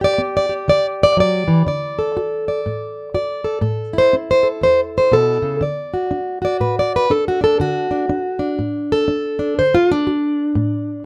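Soulful and gritty, this short cut from a longer acoustic country blues piece features a lone fingerpicked, plugged-in steel-string parlour guitar, swinging at 122 BPM in D mixolydian, tuned slightly below standard pitch. The guitar sits up front with fresh strings, a warm body and audible finger squeak, moving from G to D to A and back to D across two matching passes that begin at 0.0 and 5.6 seconds. Light reverb lends a touch of space around the warm, up-front sound.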